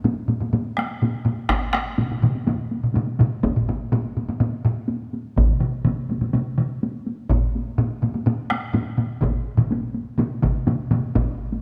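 Powerful and ceremonial, this short cut from a longer Japanese traditional taiko drum ensemble piece moves at 124 BPM in a straight 4/4. Four taiko ensemble parts build the sound, the first two striking from the opening moments, one with heavy sticks and one with hard sticks, before two more heavy-stick parts join at 1.5 seconds; all four share a small-room sound, with the last three sitting up front. Close, detailed microphones catch the acoustic attack of each blow, set within a moderate scoring-stage reverb that lends the drumming a ceremonial weight.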